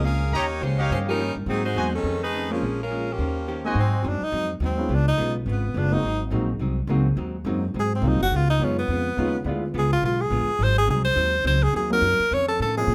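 Energetic, swinging big band jazz at 210 BPM in Ab mixolydian, where a tight, up-front saxophone section with light vibrato carries the opening melody against clear trumpet stabs before a bright, close-miked tenor saxophone takes a scooped, vibrato-laden solo at 3.8 seconds, all over a woody, up-front pizzicato upright bass, a dark hollow-body archtop guitar and a warm concert grand piano with deep bass, set in light reverb, in an excerpt cut from a longer piece.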